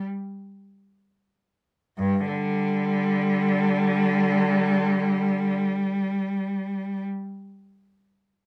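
A moderate studio reverb gives this short recording a gentle sense of space around a single cello placed up front. It is a classical piece for unaccompanied cello in free time, with a nostalgic, serene mood, cut from a longer work. The lone player draws a clear, smooth, faintly distant bowed tone with vibrato, holding an even line that sits between G2 and G3. The opening passage slows down over its first 2.0 seconds before a second section begins, and the cello falls silent at 7.0 seconds.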